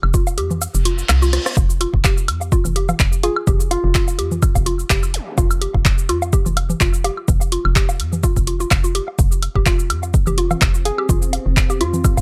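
A dry, close-sounding slice of quirky, hypnotic minimal techno at 126 BPM in F minor, with a light swing on the sixteenths. A punchy, tape-warm electronic kick sits up front, joined by an analog drum machine of cabasa, handclaps, hi-hat and rim click, while dry woodblock and congas carry a tape echo. Underneath, a hollow, bouncy FM bass with a dark, knocking attack pumps against the kick, and a woody, round mallet-like pluck with chorus and tape echo repeats a short riff. The kick drops out from 0.6 to 1.6 seconds as a reverse cymbal rises, a drum fill lands at 1.3, and the groove drops back in at 1.6, with a brief electronic zap later on. A tine-like, warbling thumb-piano pluck adds short melodic phrases, and from 10.3 seconds a swarming, tense drone of detuned granular sines hovers in the background as the piece carries on.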